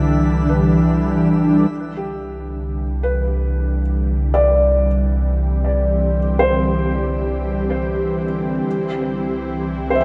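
A cut from a longer ambient piece opens on an ethereal, airy pad of detuned, chorused sustained chords with a noise layer and long release, sitting up front over a deep, round sine sub bass that holds a low C. A faint, glassy texture of drifting overtones hovers high in the background, then falls away at 1.7 seconds as the pad begins a gradual fade-in. A felt-muted upright piano enters at 0.5 seconds with intimate, mellow arpeggios whose short sustain and audible action noise are carried by an analog delay. The harmony rests on Em7 over C before shifting to Dsus2 over C at 8.7 seconds, giving the slow, straight pulse a weightless, warm calm. A plate reverb and echo-heavy mix wrap the parts in a gentle, floating haze.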